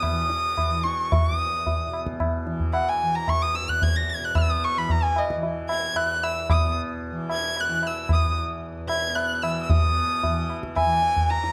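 Serene and meditative, this short Hindustani classical passage moves at 112 BPM in a straight 4/4, set in raga Yaman on E. A single bowed violin carries the melody from start to finish, sitting close and up front with a soft attack, expressive vibrato and gliding portamento that give its warm tone a singing quality. Underneath, a tanpura sustains a buzzing, shimmering drone, its softly plucked strings sitting lower in the mix. The high-tuned tabla is equally close and dry, its short-ringing strokes standing level with the violin at the front. The production is dark, set in a moderate recital-hall reverb that lends the bowed line some air, and the music shifts into a new section at 9.7 seconds before the fragment is cut off at 11.5 seconds, part of a longer performance.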